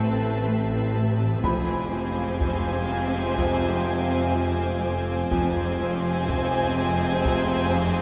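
Opening on an Amadd9 chord at 62 BPM, this ominous, uneasy suspense film-score excerpt sets a warm, vibrato-laden violin section on the melody over a distant second violin line, bright violas, clear trombones, dark French horns and a soft, chorused organ-like pad, while a ringing Celtic harp plays a riff alongside rich cellos and double basses, a swarming, warbling drone, a mellow felt-muted upright piano and a very quiet studio violin texture, before heavy-sticked taiko drums enter at 1.4 s as the harmony moves to Fm, the whole ensemble set in a moderate scoring-stage reverb.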